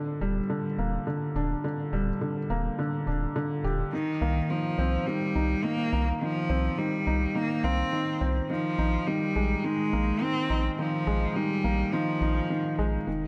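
A felt-muted upright piano opens this melancholic, hypnotic piano and strings electronica piece at 105 BPM with an intimate riff, its thin felt and audible action noise softened by a low-pass filter and echoed by digital delay, as a round, deep analog bass joins at 0.2 seconds and a clear, bowed cello with smooth vibrato enters at 3.9 seconds to carry the melody through its own delay over Ebmaj7, Cm7 and Bb7sus4 harmony in a lightly reverberant studio space.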